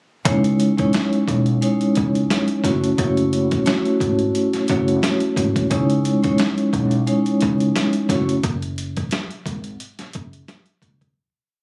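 A soft-mallet vibraphone opens the piece, its metallic, ringing tone mellowed by a cassette-tape haze and filtered at both ends, playing chopped chords repeated like a sampled loop with a medium motor vibrato, sitting up front in the mix. Almost at once a tough, dark boom-bap groove settles in, with a sampler-style kit that sounds pitched down, gritty and compressed: a thumpy kick, a medium-tuned snare and sixteenth-note hi-hats carrying a laid-back swing. Beneath them a pizzicato upright bass with a woody, steel-string character works a deep looped line dotted with muted ghost notes, moving through minor harmonies over the single verse. The whole track sounds captured on a phone in a small room, with club reverb, compression and vinyl crackle adding dusty grit. The vibraphone stops at 8.3 seconds, leaving bass and drums to carry a brief break that fades out by 11.2 seconds.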